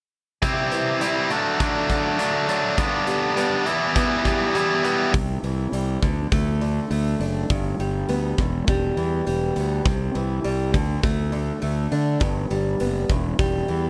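A biting, bright overdriven guitar opens this excerpt of quiet-loud alternative rock, playing an up-front riff from 0.4 seconds until it drops out at 5.1 seconds. Beneath it, a picked acoustic archtop guitar with fresh strings and a boxy tone carries arpeggios through the whole passage over a straight 4/4 pulse. At 5.1 seconds, a round, fuzz-laden fingered electric bass enters up front, and its overdriven sound holds the low end until the close at 13.9 seconds. The big rock drum kit resounds in a large room, its hi-hat and punchy kick heard through a dark, smooth, rolled-off top. The chords cycle through C, D, G and E minor, giving the music an anthemic yet bittersweet pull, and the dry mix carries little reverb.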